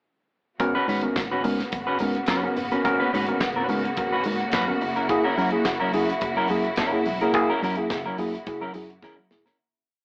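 At 0.6 s the full band enters together on a glamorous, danceable disco verse in G# minor at 107 BPM, moving from G#m11 to F#7. A dry 70s drum kit with a fat snare layered with handclaps drives a four-on-the-floor beat with open hats on the off-beats. A punchy, foam-muted fingered bass plays octaves with slides, a dark clean guitar chops sixteenth notes up front, a worn, slightly out-of-tune, lightly overdriven tine electric piano adds a percussive groove, and a lush, close string section holds sustained chords with vibrato. The band sounds like it is playing live in one room through moderate reverb with an AM-radio tone, and it fades out from 7.3 s, with a drum fill at 9.0 s closing the piece.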